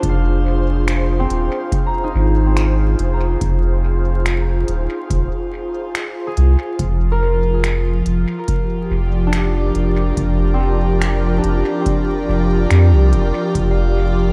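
A deep, round sub bass sits up front in this hazy ambient dub excerpt, holding soft, mellow low notes under a slow 71 BPM pulse in F dorian. An airy, breathy pad drifts through sustained chords with a slow attack, long release and chorus, its detuned layers carrying a faint noise texture. A bright concert harp rings out thumb-plucked arpeggios that trail off through tape echo. An analog-sounding electronic kick anchors the straight 4/4 time alongside a softer kit of finger snaps and smooth hi-hats, sent through dub echo and given the roomy, tape-warm character of a large space. Vinyl crackle hangs over the whole piece as the harmony moves from Fm to Gm7/F at 6.8 seconds, and the drums stop at 13.7 seconds while the pad, harp and bass ring on.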